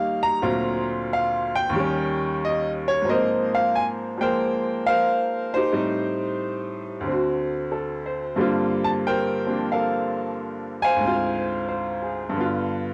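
Worn old cassette tape gives this short recording a warbly pitch drift, framed by a light reverb. A solo upright piano plays swinging jazz in G minor at 90 BPM in 4/4, its eighth notes swung for a late-night mood. The piano sounds bright and woody, with long sustain, and sits up front across a range from D2 to Bb5. Its opening phrase moves from D7alt to Eb7. At 3.1 seconds a new section begins on Ab69 and passes through Am7b5, D7 and Gm11 before Dm7b5 and G7 close this 12.9-second fragment cut from a longer piece.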